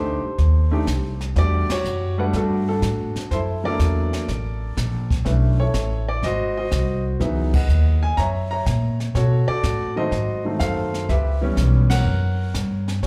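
A swung 4/4 groove carries this moody, cool jazz piano trio fragment, heard as a live club gig through the venue's sound system with a touch of room reverb. A mellow, deep-voiced concert grand carries the melody with a slapback echo over a woody, thumpy pizzicato upright bass, while a brushed drum kit with dark cymbals, a high-tuned snare and a boomy kick joins at 0.4 seconds. Rootless and altered dominant chords wind through minor eleventh harmonies, and the full band hits accents at 1.6, 7.4 and 11.8 seconds.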